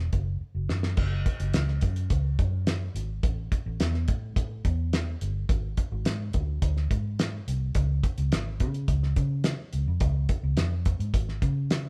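A close, lightly reverberant room sound frames this short cut from a longer piece of uptempo 1960s-style soul, played by a band together in one space. The mood is driving and passionate, moving at 106 BPM in a straight 4/4 feel in F# minor. A vintage muted electric bass, played with the fingers, sits up front with a dark, round, foam-muted and amped tone, ranging from F#1 to C#3 throughout. An acoustic drum kit, damped with cloth, thumps just as close, with a fat snare, tight kick, dark crash and hi-hat, a rolled-off top and a small-room character. The drums play a fill from 0.4 to 1.0 seconds before the main section settles in at 1.0 seconds and carries through to the end.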